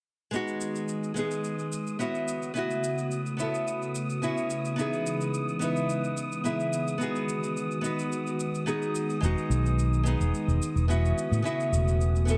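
A straight, relaxed 4/4 groove carried by a layered electronic shaker underpins this sunny sunset chillout passage, where an up-front fingerpicked nylon-string guitar with audible finger squeak and delay plays over an airy, detuned pad of sustained chords with chorus, 12-bit sampler grit and a filter sweep, a dark, breathy wind-like tuned noise texture drifts in at 0.7 seconds, and a round, mellow fretless electric bass joins at 9.2 seconds as Emaj7, A69, C#m7 and G#m7 chords cycle inside a lush hall reverb.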